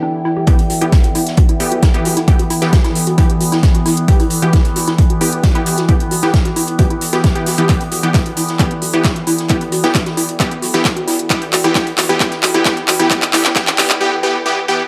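A moderate stone-room reverb with a digital sheen frames this short cut from a longer driving, peak-time techno track, industrial and relentless in mood, in a straight 4/4. A punchy, layered electronic kick sits up front beside a techno kit of handclaps and smooth, pumping hi-hats, while a distant, roomy soft-mallet kit adds hi-hat and a medium-tuned snare in the background. Underneath, an overtone-sweeping drone built from sawtooth and sine swells slowly with a resonant, chorused sustain, and a warbly, lo-fi tape-like pad, nostalgic and ring-modulated, hovers further back with its own pumping. A woody, wave-folded pluck carries the riff with a fast attack, short decay, overdrive, lush chorus and dub echo, and detuned supersaw stabs punch in from 0.5 seconds through a low-pass filter and delay. The whole passage is one long build-up on a single E minor chord, with filter sweeps running across the synths, a drum fill from 7.7 seconds and a brief break at 14.0 seconds.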